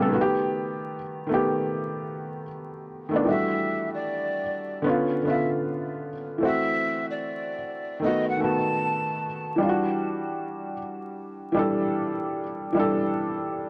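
A loosely swung 4/4 groove carries this hazy, reflective lo-fi hip hop fragment, cut from a longer piece, where a felt-muted upright piano comps intimately up front through cassette-tape coloring and a low-pass filter, its short sustain and audible action noise framing a breathy, hollow jazz flute that floats in at 3.3 s with a straight tone and soft attack, dimmed by its own low-pass filter and trailed by analog delay until 9.6 s, all set in a moderate studio reverb over a bed of vinyl crackle.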